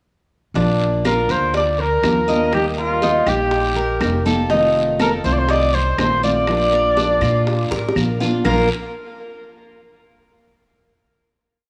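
A fingerpicked dreadnought acoustic guitar and a thumpy pizzicato upright bass open this danceable Cuban son and guajira piece in Bb major at 122 BPM, the bass playing a tumbao that anticipates the chords. A bright, metallic tres soon joins with an arpeggiated guajeo through tape echo, alongside background congas with slaps and open strokes, tight bongos in steady eighths with hand bell, and a raspy guiro. From 1.1 s a punchy trumpet with vibrato and a cassette tape colour takes the lead up front with a motif-based melody, while woody claves keep a two-bar time line over a Bb, Eb, F7 progression, and a drum fill leads into a final Bb5 chord, all captured as a home cassette recording with light studio reverb.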